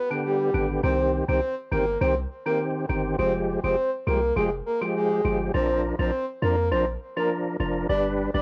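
A soft, breathy flute-like synth lead opens this bouncy, sultry dancehall excerpt with a vibrato-tinged melody, joined almost at once by a gritty, overdriven tonewheel organ with percussive third-harmonic attacks and chorus vibrato, then at 0.5 seconds by a deep, boomy 808-style bass, all moving through a brief minor-key progression in a light reverb with the hazy character of a home cassette recording.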